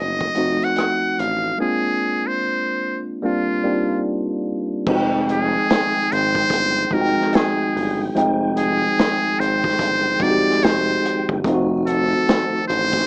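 Late-night and smooth, this neo-soul R&B cut moves at 73 BPM in F dorian with a swung sixteenth-note feel, its muted trumpet carrying a buzzy, thin melody with light vibrato and scooped notes up front over a worn, slightly out-of-tune tine electric piano with light overdrive. A smooth synth bass anchors the low end while a crunchy breakbeat kit, dark and gritty with a tight kick and rolled-off top, enters at 0.2 seconds, and a mellow tonewheel organ with slow rotary swirl and key click slips in very quietly at 4.9 seconds as the harmony settles onto Fm9. The whole mix carries a warbling old-cassette character with pitch drift, light reverb and a small-speaker sound.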